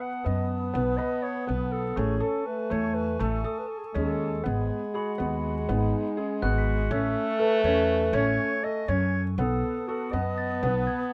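A woody, growly pizzicato upright bass sits up front in this hopeful, shimmering excerpt of contemporary chamber music in an uneven 5/8 meter with a straight feel. Above it, a dark, soft-attacked clarinet carries the classical-style melody from a roomy distance, while a French horn with light vibrato plays a second line. A felt-muted upright piano adds mellow, intimate arpeggios, and a hollow, airy flute section holds tongued, sustained chords in the background. From 3.5 seconds a glockenspiel struck with rubber mallets brings a bell-like, ringing metallic texture, and it returns near the close. The harmony moves between B7, Amaj7 and G#m7, and the sound is close and detailed with little reverb.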